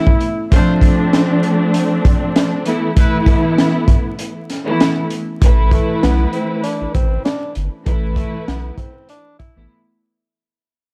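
A crunchy, up-front breakbeat kit with a punchy kick and high-tuned snare drives this reflective, moody boom-bap hip-hop excerpt at 98 BPM in A minor, under lush bowed strings, brilliant background trumpet stabs until 3.2 seconds, a breathy subtone tenor saxophone melody with tape echo returning at 5.7 seconds, and a deep saturated sub bass from 5.4 seconds, all set in a dark, small-room production with vinyl crackle as it fades out.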